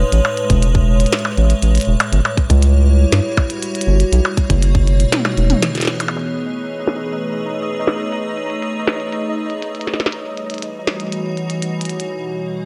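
An icy, crystalline glass pad with chorus and reverb holds sustained chords from the start, joined at once by a round, deep analog bass and a tape-warm glitchy drum kit of clicky hats, a tiny snare, toms and percussion blips, with a tight electronic kick entering at 0.5 seconds. In this wistful, glitchy IDM cut, the kick and then the bass drop away as a drum fill leads into a brief break, and from 6.5 seconds a faint, pulsing gated texture of detuned triangle tones fills in alongside the pad. A filter sweep runs over the drums through the second half.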